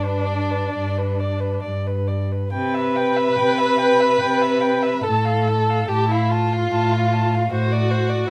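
A light reverb surrounds this short cut from a tender, serene, slow romantic movement for string quartet in C major, moving in a rubato 3/4 at 64-78 BPM. All four players bow con sordino: the first violin sings the melody with vibrato, a soft attack, portamento and a smooth top, while the second violin adds a dark, distant second line. The viola gives close, warm accompaniment with vibrato, and the cello holds a veiled bass up front with light vibrato, as the harmony passes from G through C and F/A to D7/A.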